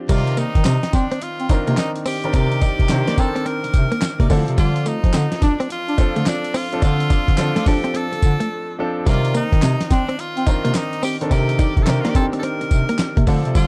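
A dark, studio-ambient production frames this slick, bouncy new jack swing excerpt at 107 BPM in 4/4, with a 16th-note swing and a C dorian tonality moving from Cm9 to Dm7 at 4.3 seconds and back to Cm9 at 9.1 seconds. Up front, a dusty sampler-style drum kit brings a thumpy kick, medium-tuned snare, handclaps, hi-hat, tambourine and crash cymbal, its sound gritty, compressed and tape-warm. The bass line comes from a breathy bass clarinet, mellow and close-miked with jazz-inflected vibrato, while a clear, polished baby grand piano supplies present accompaniment. A clean, direct-recorded electric guitar plays a picked, compressed riff coloured by analog chorus, and a horn section adds stabs from the background. Over it all an edgy tenor saxophone carries the melody with forceful, punchy pop phrasing, scooped notes and vibrato, and a brief break arrives between 8.5 and 9.1 seconds.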